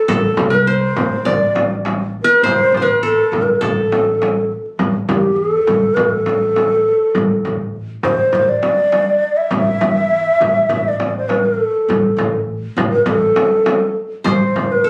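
A breathy, hollow low ney sits up front with vibrato and carries the melody in this melancholic, longing Arabic maqam ensemble piece in A maqam bayati, moving at 102 BPM in a straight 4/4. A bright-edged qanun played with fingerpicks adds a second line until 4.8 seconds and returns at 14.2 seconds, while a woody, thumpy pizzicato upright bass, a saturated, up-front frame drum and a very quiet clay-shell darbuka hold down the low end and percussion. Cut from a longer piece, the phone recording places the ensemble in a small room with club reverb and compression.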